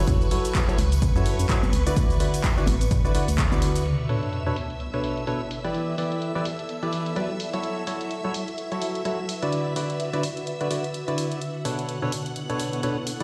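Bittersweet and soulful, this piano house excerpt sets an up-front, hollow organ stab riff with dub echo over shimmering string-machine violin chords, with a dark FM bass, a punchy kick, tambourine and congas all dropping out just before a sub drop lands at 3.9 seconds, after which a cloudy granular pad drifts in beneath the filtered drum machine's hats, claps and shaker, the strings, stab and pad pumping in a big, reverberant room.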